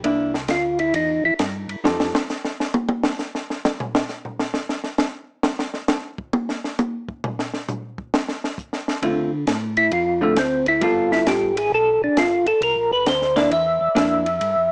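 A swung 4/4 groove with a bluesy, greasy lilt drives this short soul jazz organ trio fragment, cut from a longer piece. A compact cocktail drum kit sits up front with a dry, acoustic sound: punchy kick, high-tuned snare, dark cymbals, and toms. It carries a drum solo from 1.8 to 9.0 seconds as the other parts fall away. A mellow tonewheel organ supplies a round, clean bass line through chorus vibrato and a slow rotary speaker. A clean, picked hollow-body electric guitar adds compressed, shadowy comping up front. Leading the way is a percussive tonewheel organ melody, also mellow, round and dark, with key click and third-harmonic percussion, shimmering through chorus vibrato and slow rotary. It takes a brief phrase near the start and returns from 9.8 seconds over a ninth-chord and minor-seventh progression. Moderate studio reverb meets a dry, gritty, small-speaker recording quality.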